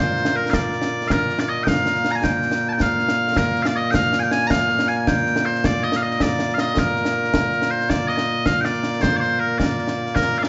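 Loud, piercing bagpipes open this proud, ceremonial piece of Scottish pipe music, carrying the melody up front in a straight 6/8 with a slapback echo trailing their continuous tone. Concert snare drum and concert bass drum join at 0.2 s from a small room, their bright cymbals sitting beneath the pipes, and the opening strain begins again at 7.9 s. A light reverb surrounds the sound, the top end is rounded off, and the passage is cut from a longer performance.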